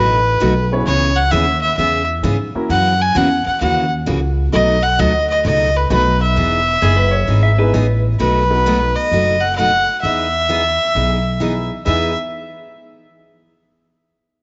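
A moderate plate reverb and a softened top end frame this playful, down-home western swing excerpt in E major, swinging along at 131 BPM. An up-front bowed fiddle carries the nasal, earthy melody with light vibrato, over a bright, full-bodied picked acoustic guitar and a woody, growly pizzicato upright bass, while a warm vintage upright piano joins in the background at 0.7 seconds with its action noise audible. A clean, dark electric lap steel adds a brief slide line from 6.8 to 8.0 seconds.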